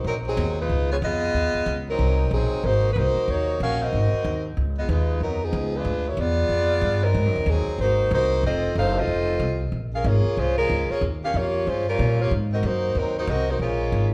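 A dark, tight saxophone section with light vibrato carries the melody from the first beat over a woody, thumpy upright bass played pizzicato, both up front, in this joyful, energetic big band swing passage in Ab major at 186 BPM, recorded live in one large studio with moderate reverb and cut from a longer piece.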